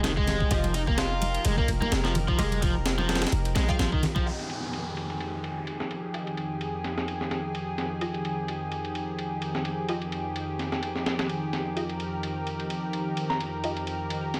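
A thick, airy unison pad carries sustained Fm9 chords with chorus, 12-bit sampler grit and sidechain pumping across this raw, energetic 128 BPM breakbeat excerpt in F minor, over a gritty, compressed sampler-style kit with a thumpy kick and high-tuned snare under low-pass filtering, while an overdriven picked guitar riff with tape echo, a boomy 808-style bass and bright, dry congas drop out near 4 seconds, leaving muted dub chord stabs with phaser and tape echo, an electronic downlifter, and a brief, pure FM bell at 13.3 seconds in light reverb.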